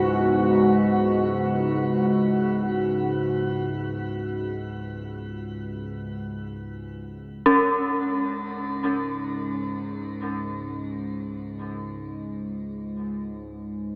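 Dark ambient drone, ominous and desolate, in which a deep, moody pad of detuned sawtooth chords with chorus and shimmer reverb fades out over its first 7.5 seconds above a nasal, evolving analog drone that holds to 14.0 seconds, while a very quiet, pure quartz singing bowl rings close and dry until an eerie, inharmonic detuned synth bell takes over with arpeggios trailed by diffuse delay, the piece set in a wet cathedral reverb with an AM radio sound.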